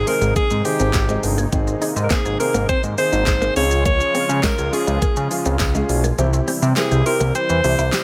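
A straight 4/4 groove at 103 BPM drives this upbeat, euphoric dance-pop excerpt in Ab major, where a punchy, bright alto saxophone with light vibrato and delay carries the melody up front over a thick sawtooth analog bass and an electronic pop drum kit of knocking kick, fat snare, crisp hats, handclaps and shaker, while a warbling, detuned analog pad, a woody FM mallet-like synth pluck arpeggiating through chorus, phaser and delay, a background grand piano and a clean, picked electric guitar riff with lush chorus fill in behind; a jingly tambourine slips in at 4.4 seconds, the kick drops out at 6.2 seconds, and sidechain pumping on the pad, pluck, bass and piano pulses under chords moving from Ab to Db to C.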